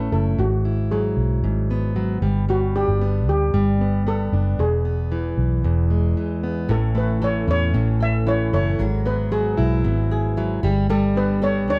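Acoustic pop with a sunny, heartfelt mood, this clip from a longer piece moves in a straight four-beat feel under a dark, warm production with light reverb. A steel pan carries the melody, its metallic, shimmering tone softened by rubber sticks into a smooth lead. Up front, a fingerpicked plugged-in steel-string acoustic guitar gives full-bodied jumbo accompaniment, joined by a vintage muted fingered electric bass that sounds round, punchy and amped. After a brief break at 6.2 seconds, a second section begins at 6.7 seconds, where a fingerpicked flamenco guitar adds arpeggios treated with tape echo. The harmony cycles through chords such as Eadd9/G#, Gadd9, E and A.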